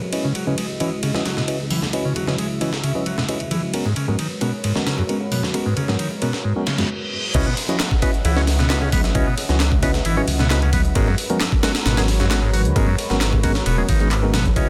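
A straight 4/4 breakbeat groove at 133 BPM drives this swaggering, funky excerpt, where a gritty, up-front sampler-style kit with a thumpy kick and high-tuned snare leads distant bongos and congas, a buzzy combo organ riff, filtered tine electric piano stabs with tape echo, and a moody, pumping analog pad over C#m11 and G#m11, until a very quiet reverse cymbal and downlifter at 6.9 seconds cue the drop at 7.3 seconds, where a thick, menacing detuned saw bass and a tape-warm drum machine with handclaps and hi-hat join in.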